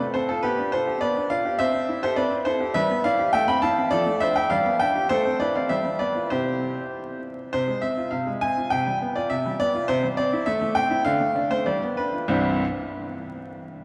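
In a rubato 2/4 that breathes between 94 and 104 BPM, a solo baby grand piano plays an elegant, cheerful classical-period sonatina in C major, tuned to A4 = 435 Hz and spanning C2 to B5. The clear, intimate piano sits up front with a natural tone, long sustain and audible action noise, while a wet cathedral reverb fills the church or hall space and faint vinyl crackle lies beneath. The passage opens on G7/B, darkens briefly to Fm/C at 7.5 seconds, and returns home to C at 12.3 seconds before this short cut from a longer piece ends.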